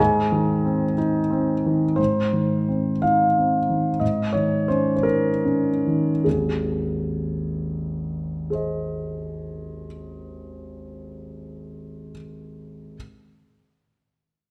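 A classical, romantic character piece for solo piano in Ab major, lyrical and warm in mood, moving in a rubato 6/8 at roughly 48 to 62 BPM counted in dotted quarters. The concert grand sits up front and sounds clear and polished, with deep bass, long sustain and the audible noise of its action lending an intimate, close-up quality. Its range spans from Ab1 up to Ab5, and the harmony rests on Ab, shifts to an Eb5 over Ab sonority at 4.0 seconds, then returns home to Ab at 6.3 seconds. The tempo slows from 1.0 to 6.3 seconds across the opening sections, giving the phrasing a lingering, breathing feel. A wet recital hall reverb surrounds the instrument, and the passage is taken from a longer piece, with the piano sounding until 13.0 seconds.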